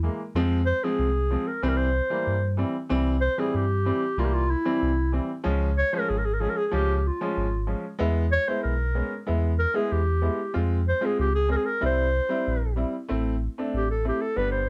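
Set in a small room with dark, warm production, this bittersweet, soulful klezmer excerpt moves at 94 BPM in 2/4 in C phrygian dominant. A bright, woody upright piano and a deep, sine-toned sub bass with octave sit up front from the start, and a smooth-topped, classical-style solo clarinet enters at 0.7 s to carry the melody over chords that pass from Fm and C through Db and E before a turn to Am at 13.1 s.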